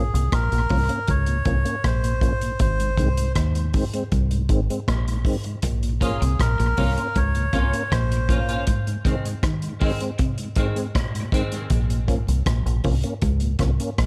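A straight four-beat dub reggae groove opens the piece: a vintage drum kit with tight kick, rim click and hi-hat sits up front, mid-forward with a rolled-off top, beside a deep, round, foam-muted fingered bass that sounds dark and direct. The mood is meditative and spacious, and the harmony alternates between two chords. A reedy, breathy melodica with a nasal, plastic-case tone carries the melody through tape echo until 8.6 s. Beneath it, a tonewheel organ provides clear, lightly overdriven accompaniment with chorus vibrato, key click and a stopped rotary speaker. At 5.6 s a compressed, picked electric guitar at the edge of break-up adds a background riff bathed in lush chorus and tape echo, and a warm, clean, picked electric guitar soon joins with ensemble chorus and its own tape echo; both are gone by 11.7 s. Light reverb and small-room ambience frame this passage, which is cut from a longer piece.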